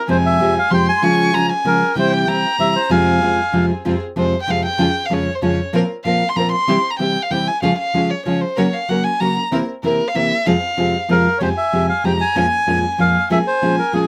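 Sultry and tense, this rubato tango fragment in triple time opens with a reedy, dark bandoneon carrying the melody up front, which returns at 11.1 seconds. A nylon-string guitar, fingerpicked and full-bodied, anchors the accompaniment throughout, while a soft-attack studio string section floats in the background with pure, bowed stabs. A single rich violin plays a second line with vibrato and portamento, taking an expressive, boxy solo from 3.9 to 11.4 seconds, all captured with close, detailed microphones and light reverb.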